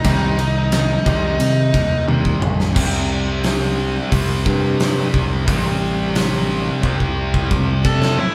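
A straight 4/4 pulse at 88 BPM drives this dark, cathartic fragment of quiet-loud alternative rock, tuned to A4 = 443 Hz. An up-front big rock kit with a fat snare and tight kick rings in a bright stone room, and an overdriven, growling picked bass sits under a thick fuzz guitar riff in the background. A dark octave-fuzz lead guitar sings a melody until 2.0 seconds over a dark, clean, compressed electric guitar playing fingered arpeggios on C minor until 2.7 seconds, when a second, up-front fuzz guitar riff joins in and the harmony shifts to a C power chord at 2.8 seconds, with drum fills and a brief return of the lead near the close.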